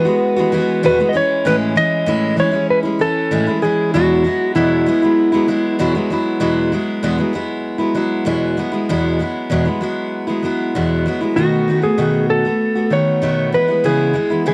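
Recorded at home onto cassette in a small, wet-sounding booth, this short, heartfelt and carefree pop excerpt sets an up-front, full-bodied jumbo acoustic guitar, its picked chords carrying audible finger squeak and tape character, under a dark, compressed clean lap steel slide melody that sings over the opening and returns at 11.4 seconds as the harmony moves toward B7 and C#m7.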